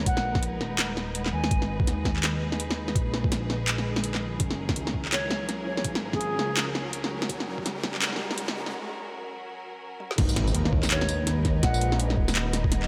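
A distant, pure silver concert flute with dub echo floats short phrases over a dark, cinematic half-time drum and bass groove at 166 BPM in G# minor, where a lush bowed string section pumps under sidechain and a low-pass filter sweep, a deep rumbling detuned saw bass sustains beneath, an up-front kit of woody snare, metallic hats, handclaps, tambourine, toms and crash drives alongside a gritty overdriven kick, and a background electronic riser builds from 3.1 seconds to a break at 8.7 seconds before the drop and impact land at 10.2 seconds, joined near the close of this cut from a longer piece by a dreamy reversed swelling texture.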